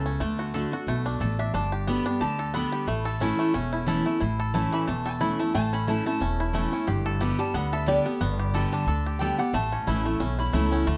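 Close, detailed microphones and light reverb frame this joyful, driving bluegrass cut in A mixolydian at 180 BPM with a swung feel, where a metallic, nasal lap resonator guitar, fingerpicked and played with a steel bar, solos from 0.0 to 11.0 seconds over a bright, up-front dreadnought acoustic guitar accompaniment, twangy banjo arpeggios carrying tape echo, and a woody, thumpy gut-string upright bass, moving through D, G and A chords.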